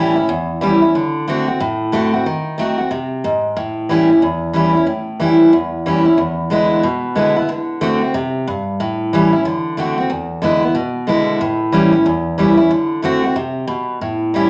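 Rock with a retro, rollicking mood, this fragment of a longer piece moves at a brisk 184 BPM in 4/4, its eighth notes swung in a loose shuffle. A lone picked steel-string acoustic guitar carries the whole 14.5 seconds, ranging from E2 up to F#4 in A mixolydian. The jumbo-bodied instrument sounds full-bodied and up front, with fresh strings and audible finger squeak giving it a lively, close presence. The harmony follows a bluesy path from A7 to D7, passing through a D#dim7 before returning to A7, then turning through E7 and D7. A brief closing passage from 11.4 seconds moves from A7 to D7. A wet, large studio reverb with a short 0.8-second decay surrounds the guitar and lends it a sense of open space.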